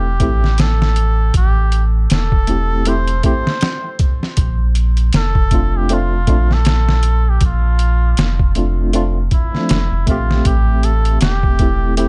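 A muted trumpet carries a soft, veiled melody with light vibrato and tape echo over a worn, slightly out-of-tune electric piano pulsing with tremolo and a deep, round analog bass, before a gritty, pitched-down sampler drum kit with a thumpy kick enters at 0.2 seconds, setting a hypnotic, melancholic trip hop groove at 79 BPM in A phrygian, moving from Am7 to Bbmaj9 and back, in a dark, dry production cut from a longer piece.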